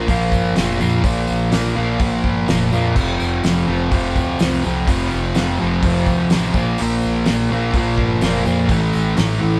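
Garage rock with a swaggering, menacing strut at 126 BPM, this short excerpt cut from a longer piece has a double-tracked fuzz guitar riffing up front between F2 and Bb3 over power chords moving from Bb5 to F5, back to Bb5 and onto A5 at 8.7 seconds. A growling, overdriven fingered bass sits underneath while a cloth-damped drum kit thuds along with a fat snare, tight kick, dark cymbals and a rolled-off top, joined by a very quiet, jingly tambourine. The band plays live in one room with moderate studio reverb, giving the whole take a close, raw immediacy.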